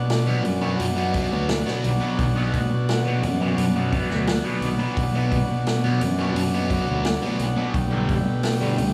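A dreamy mix soaked in a huge ambient reverb gives this short psychedelic rock excerpt a hypnotic, mysterious air, moving at a straight 86 BPM in 4/4 and B minor. An overdriven combo organ with a buzzy, vintage tone holds sustained chords from the start, sitting on Bm before shifting to Gadd9/B at 7.7 seconds. Beneath it, a fingered electric bass with a dark, round, overdriven fuzz anchors the low end, while a vintage acoustic drum kit with a punchy kick, medium-tuned snare, hi-hat and a rolled-off top comes in at 0.1 seconds. Up front, a bright, double-tracked fuzz guitar plays a compressed, picked riff colored by distortion and phaser. Very quiet, high-tuned congas with a thin, damped skin and hard hands join at 1.3 seconds, adding a light percussive edge under the haze.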